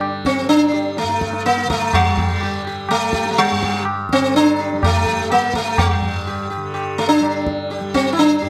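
The plectrum-plucked sitar sits up front, carrying an introspective, longing melody between G3 and G4, its buzzing tone haloed by the shimmer of sympathetic strings. This Hindustani classical passage is set in raga Kafi on G, moving at 125 BPM in a straight 4/4 and cut from a longer piece. Beneath the sitar, a softly plucked tanpura holds a low drone from G2 to G3, its own acoustic buzz adding a gentle, warm halo. The tabla, tuned high and miked close, gives a ringing percussive pulse that sits between the two string parts in level. All three instruments play together for the full 8.5 seconds, captured with close, detailed microphones and a touch of light reverb.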